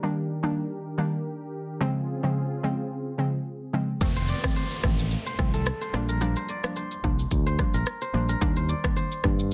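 A hollow, bouncy square-wave pluck and a smooth, detuned sawtooth pad open this sunny, romantic afrobeats excerpt, both mellowed by chorus and a low-pass filter. At 4.0 seconds the pad stops as an up-front electronic afro-pop kit arrives, with a deep kick, rim click, shaker and soft clipping on the snare, alongside a dark, round, punchy fingered electric bass and a faint downlifter. From 4.2 seconds a crisp, ringing fingerpicked kora riff with digital delay joins, all set in light reverb within a dense, heavily limited modern master.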